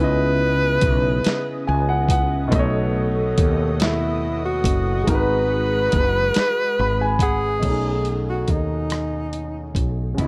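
A mellow tenor saxophone carries a yearning, jazz-style solo melody with vibrato and scooped notes through tape echo, over a grand piano, a growly, round fretless electric bass, and a lush, detuned unison pad with chorus sitting in the background. This fragment of a slow, late-night R&B piece moves in 6/8 at 47 BPM through C#m9, B9, G#m7 and B13. A gritty, compressed sampler-style soul drum kit with a thumpy kick enters at 0.8 seconds, the piano adds short fills, and the pad drops away at 7.6 seconds as a new section begins, all set in a digital ambience.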